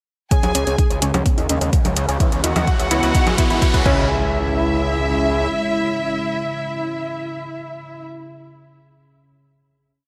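A four-on-the-floor electronic kick and a deep house drum kit of metallic hi-hats, low congas and crash drive this dramatic, cinematic melodic techno piece through a build with a drum fill until 4.0 s, as a gritty, distorted synth bass rolls in sixteenths until 5.5 s and a woody wave-folded pluck and punchy synth brass stabs carry filter sweeps beneath a riser, leading to a final hit at 4.1 s. Throughout, a smooth supersaw melody, doubled an octave higher by a lush, vibrato-rich violin section, sails over a moody analog pad and, from 1.3 s, a resonant analog drone, those four parts pumping under sidechain in a bright 1980s-style digital production bathed in hall reverb.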